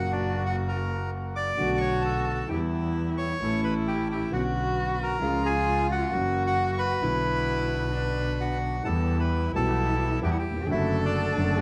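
Heard in a moderate large-studio reverb, this passionate, dramatic tango fragment moves with a rubato feel: a reedy, up-front bandoneon carries the melody through tape echo over an expressive bowed cello second line with vibrato and portamento, a dark, mellow, vintage concert grand piano accompaniment, a bright, biting bowed double bass, and a band-limited second bandoneon adding stabs in the background, with a new section arriving at 8.9 seconds.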